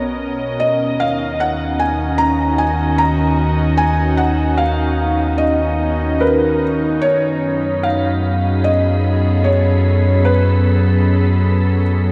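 Ambient in a peaceful, warm mood, this excerpt from a longer piece moves unhurriedly in a straight 4/4 through Bmaj9, D#m7 and then F#m6 at 7.0 seconds. A felt-muted upright piano carries the melody, soft, mellow and a little boxy, with audible action noise and a gentle tape echo that makes it feel intimate. Beneath it, an evolving wavetable pad holds sustained chords up front, morphing and warbling with a detuned, full-bodied vintage character, thickened by chorus. A deep, round sub bass anchors the low end and fades in gradually over the whole passage, as does a dark, airy, wind-like tuned noise texture sitting in the background. At 1.3 seconds a very quiet, string-like bowed drone enters on a single note, slightly tense, with vibrato. The parts sit in a vast, echoing cathedral reverb that lets each sound linger long after it is played.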